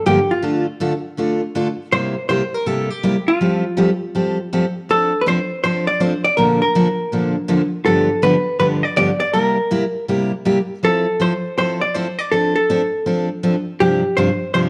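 Swinging and down-home, this short country excerpt moves at a brisk 162 BPM in 4/4 with a swing feel on the eighth notes, set in F major. A vintage hollow-body jazz guitar carries the melody, its dark, clean, compressed electric tone sitting up front in a fairly high register. Beneath it, a picked steel-string dreadnought acoustic guitar supplies the accompaniment, warm and full-bodied with the ring of fresh strings, also placed up front. The harmony moves from Dm and C7 through Fadd9 in the opening section, then shifts at 4.9 seconds into a longer passage colored by Bbmaj7, G7 and Fmaj7 before settling on a G7sus4 near the end. A moderate echo-chamber reverb and studio ambience give the pair a roomy, natural setting, and the piece is cut from a longer performance.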